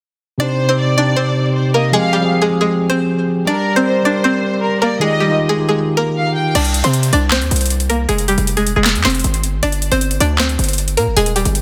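A bright, twangy string-like resonator pluck carries the melody of this melancholic, eerie trap excerpt in C minor, its sawtooth tone swept by a filter and colored with chorus, phaser and tape echo. From 0.4 seconds, a lush, bowed studio violin section with vibrato and tape echo adds a second line over a mellow, clean tine electric piano, moving through Cm, Fmadd9, Gm and Ebadd9. At 6.5 seconds the strings and keys give way to a punchy, heavy 808-style bass, and at 6.6 seconds an overdriven trap kit with a sharp snare, metallic hi-hats, handclaps and crash drives the 156 BPM half-time feel, all set in a moderate hall reverb under a dense, heavily limited master.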